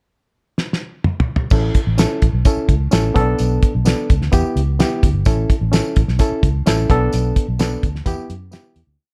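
Uptempo 1960s-style soul at 128 BPM in A mixolydian, a warm, danceable piece whose cloth-damped, thuddy drum kit opens with a fill at 0.6 s, playing a backbeat groove up front with a fat snare, tight kick and dark cymbals. At 1.5 s a round, foam-muted fingered electric bass enters with a melodic, syncopated line and ghost notes, joined by a barky, lightly overdriven reed electric piano playing close-voiced quarter-note chords with grace notes, and a jingly tambourine on every beat in the background. The chords move from A through Bm7 and Em in a dark, dry production, and the piece fades out from 7.1 s to its close at 9.0 s.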